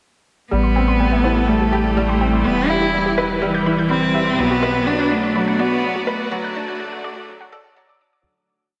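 Melancholic and cinematic, this short piano and strings electronica piece builds under a filter sweep and fades from 5.7 seconds. Up front, a rich, expressive solo cello sings a motif-based melody with vibrato and portamento through tape echo, over dark, bowed sul tasto chamber strings. A felt-muted upright piano plays a mellow six-step arpeggiated loop drifting against the bar. In the background, a warbly, dusty lo-fi pluck runs a twelve-step arpeggio with chorus. A round sine sub bass holds sustained roots, and the dreamy mix is soaked in lush hall reverb.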